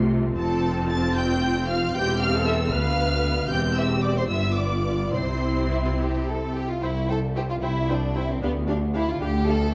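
In a 6/8 with rubato, this spirited, graceful excerpt from a quick classical-period movement for string orchestra opens at 0.0 s with a rich, lush viola section over distant, bowed cellos and double basses, the basses carrying only light vibrato. At 0.4 s a warm, smooth symphonic violin section takes the high melody while a focused studio violin section with a smooth top adds a second line beneath it. A recital hall reverb and a dark production wrap the ensemble as the opening passage gives way to a new section at 6.8 s.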